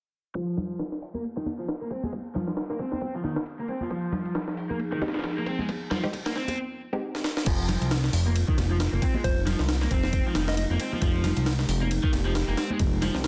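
Energetic and funky, this breakbeat excerpt runs at 135 BPM in F minor with a swung sixteenth-note feel, sitting on an Fm7 chord. A gritty, pitched-up sampler-style break kicks things off at 0.3 seconds, with a thumpy kick, high-tuned snare, hi-hat, ride and crash sitting up front with a tape-warm, compressed edge, while a double-tracked, picked overdriven guitar riff filtered through tape echo is swept by a filter, and bright, close congas sit in the background. A moody analog pad with chorus, phaser and sidechain pumping fades in at 4.4 seconds, joined briefly by muted, detuned dub chord stabs with a wave-folded filter pluck, phaser and tape echo. After a drum fill, the second section arrives at 7.5 seconds with a fat, detuned sawtooth bass, tube-saturated and sustained, pushing up front. A round, keys-like FM lead with vibrato, chorus, a telephone tone and tape echo adds a short gentle phrase high in register, all wrapped in light digital ambience and a dense, heavily limited modern master.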